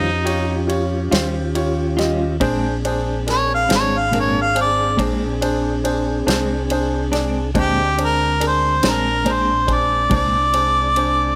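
An overdriven harmonica leads this laid-back, gritty slow blues, playing a solo up front with light vibrato, scooped notes, a soft attack and jazz-style phrasing. The tempo sits at 47 BPM in a straight 12/8 feel in Bb mixolydian, with the harmony moving from Eb9 to Bb9 at 2.4 seconds. A clean, compressed electric guitar with tremolo and a woody upright piano in plate reverb supply the accompaniment, while a mellow, flute-like tonewheel organ holds sustained chords in the background through a slow rotary speaker, its key click audible. A warm, amped fingered electric bass anchors the low end, and an acoustic country drum kit in a small room, with a punchy kick, medium-tuned snare and ride cymbal, comes in at 0.3 seconds. The guitar drops out at 10.4 seconds, and light reverb gives this short cut from a longer piece a natural sense of space.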